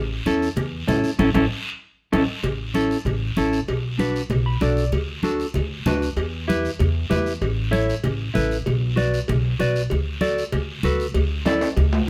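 Woody, thumpy pizzicato upright bass opens this sunny, festive cumbia at 193 BPM, joined almost at once by a dark, clean mellow electric guitar, bright, dry congas struck with hard hands, a raspy guiro, and ringing, vintage-toned cowbell and timbales. A band accent at 1.2 seconds and a drum fill at 1.5 seconds lead into the main section, where the up-front bass and guitar move through A, B minor, D and E minor under light reverb, with a brief guitar fill at 4.3 seconds. Another drum fill arrives at 11.5 seconds as this excerpt of a longer piece cuts off.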